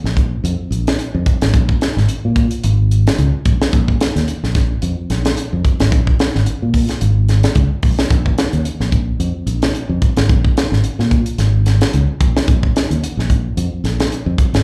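A fingered electric bass opens this afrobeat passage, with a tight funk drum kit joining at 0.1 seconds, and together they carry an intense, driving groove at 110 BPM in 4/4. A 16th-note swing of 56% gives the music a gently loping push in Bb minor. The bass sits up front with a warm, direct and amped electric tone, ranging from Ab1 to Bb2. The acoustic drums of hi-hat, kick drum and snare drum are also up front and mid-forward, with a small-room character, a high-tuned snare and a tight kick. The recording captures a live gig heard through the venue's PA, with light club reverb, and this short excerpt is cut from a longer piece, running to 14.6 seconds.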